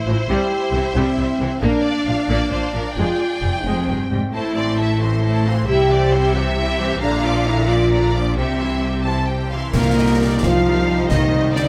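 Mellow French horns hold sustained chords through this heroic, adventurous cinematic film-score excerpt in 6/8 at 89 BPM in C mixolydian, beneath a lush, focused violin melody, a soft-attack, expressive second violin line, distant chamber violas, and rich cello and double bass sections entering at 0.1 s, before an airy flute group, bright, tight trombones, and concert snare, dark clash cymbals and bass drum join at 9.7 s as the harmony moves to Eb/C, set in a moderate scoring-stage reverb.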